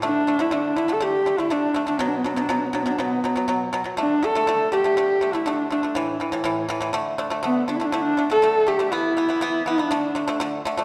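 This is Mongolian traditional folk music, cut from a longer piece, with a galloping, proud mood at 121 BPM in a straight 4/4 and set in D zhi mode. A single bowed horsehead fiddle carries the melody between B3 and A4, up front with a woody, husky, boxy tone, a soft attack, light vibrato and sliding portamento on its horsehair strings. Beneath it, an acoustic pipa plays fingerpicked arpeggios in the lower register from A2 to B3, its sound dry and percussive and also placed up front. The harmony moves among D5, B5 and A5 before a second section begins at 7.9 s, touching E5 and returning to D5. The fiddle stops at 10.4 s, and the pipa rings on to 10.8 s, with the whole production dark and warm and bathed in a generous scoring-stage reverb.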